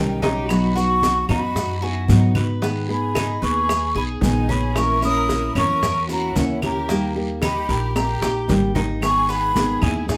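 Danceable and sultry, this excerpt of Cuban son and guajira moves at 112 BPM in a straight 4/4, with a breathy, hollow jazz flute carrying the melody over a rich, sul tasto violin section playing a second line. Fingerpicked nylon-string guitar and bright, metallic Cuban tres arpeggios fill out the harmony through B, G#m, A#dim and D#, while a dark, thumpy upright bass sits up front. Tight, high-tuned bongos and low-tuned congas enter at 0.2 seconds along with raspy guiro and grainy maracas in the background, and woody claves join at 0.5 seconds. A drum fill from 8.0 to 9.0 seconds leads into a brief new section, all set in a moderate studio ambience.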